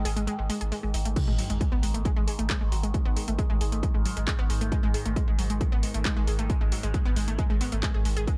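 A straight 4/4 pulse at 135 BPM drives this relentless peak-time techno excerpt, where a saturated, thick sub bass on G#1 and a resonant drone with moving overtones, chorus and phaser pump beneath a bright, detuned analog pluck riff with tape echo and cassette grit, while handclaps, hi-hats and crash cymbal hold the kit from the start until a heavy, up-front kick and a very quiet sub drop arrive with the drop at 1.2 seconds, all set in a digital ambience.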